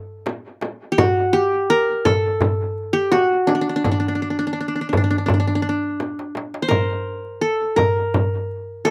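A straight 4/4 pulse at 84 BPM drives this short cut from a longer Arabic maqam ensemble piece, set in D maqam hijaz with a soulful, longing mood. The qanun opens alone at 0.0 seconds, carrying the melody between D4 and C5 with a mellow, bright-edged, plectrum-plucked tone on triple strings, and it sits up front over the percussion. At 0.3 seconds a darbuka and a frame drum join at an equal, lower level. The metal-shell darbuka is large and deep yet crisp, heard close and dry, while the small frame drum, played with soft hands, adds a lighter sparkle trailed by a slapback echo. A drum fill around 6.0 seconds leads into a new section at 6.7 seconds, and the open-air recording carries little reverb, keeping the sound direct and intimate.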